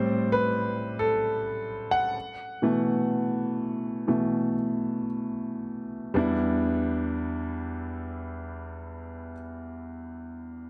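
Pop piano piece, emotional and heartbroken, in a slow 4/4 with a straight feel, cut from a longer work. A clear concert grand piano carries the accompaniment throughout, playing solo through the opening 6.2 seconds, its smooth, vintage tone sitting up front with deep bass, while a moderate, lush hall reverb surrounds it. The opening passage slows down across its first 6.2 seconds, moving from Am7 to B7sus4 before settling onto Em7 for the closing section.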